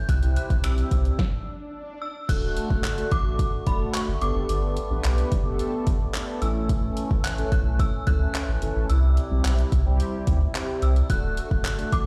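A straight dance-pop groove from an overdriven, punchy deep house drum kit, with its deep kick, snare, handclaps, finger snaps, hi-hat and crash, drives this carefree, euphoric excerpt as a round sine sub bass, a reedy, breathing hand-pumped harmonium and dark, detuned synth brass all pump against the beat beneath a chiming, warbling vintage FM synth chime melody with chorus and delay, while an electronic swell fills a brief stop between 1.3 and 2.3 seconds before the chords move on through a large, reverberant studio space.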